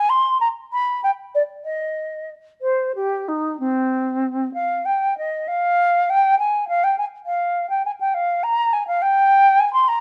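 Flowing and grave, this short excerpt comes from a baroque-style fantasia in C minor for a single concert flute, moving at a rubato 62-70 beats per minute in 12/8, counted in dotted quarters. The flute plays alone for the full 10 seconds, ranging from C4 to C6 with an airy, expressive tone and vibrato. Its tongued notes sit up front, captured by close, detailed microphones, with a light reverb around the sound. The opening phrase runs to about 5.5 seconds and then returns for the rest of the passage. The tuning sits slightly below modern pitch, at A4 = 439 Hz.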